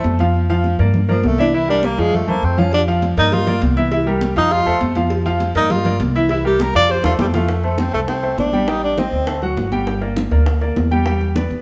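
A breathy, whispered tenor saxophone solo opens this lively, danceable Afro-Cuban jazz excerpt in F major at a brisk 202 BPM, backed by a concert grand piano with audible action noise, a growly, woody pizzicato upright bass, and bright, high-tuned congas struck with hard hands. Round, low-tuned cowbell and bongos join at 2.7 seconds, while the harmony circles through Fadd9, Gm and C7 before moving into a new section built on Am7b5, D7 and Gm. The intimate saxophone, with its soft attack and vibrato, drops out at 9.4 seconds, and the whole band sounds as if playing together live in a moderately reverberant stone room.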